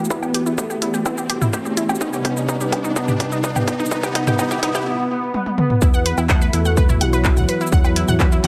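An overdriven, punchy electronic kick, re-recorded in a large room, drives this cinematic, dramatic melodic techno passage at 126 BPM in E minor. It plays alongside a tape-colored analog drum machine of handclaps, hi-hat, shaker, toms and woodblock, a fat, saturated sawtooth bass, a vintage, warbling pad holding sustained chords, a bright, wave-folded unison pluck playing arpeggios, and a smooth, dark lead melody with vibrato, all pumping against the kick. A build-up with drum fills, a background riser that stops at 4.9 seconds and filter sweeps on the pluck and lead gives way to a drop at 5.8 seconds, moving from Emadd9 and Cmadd9 to Esus2 in a lush hall reverb.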